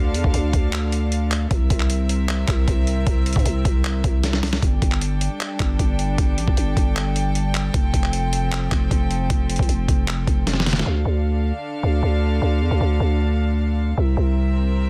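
A growling, buzzy 808-style bass with a fast attack sits up front in this melancholic, menacing trap excerpt in D minor, moving through Dm, C7, Gsus2 and Fadd9 at 154 BPM in a half-time feel. A gritty, compressed soul sampler-style kit of thumpy kick, medium-tuned snare with soft clipping, hi-hat and handclaps drives the groove, with fills at 4.2 and 10.5 seconds before dropping out at 10.9 seconds. Beneath it, a close chamber string section with gut-string tone, light vibrato and a reedy, period-style bowed sound holds sustained chords throughout, all wrapped in digital ambience and a dense, heavily limited master.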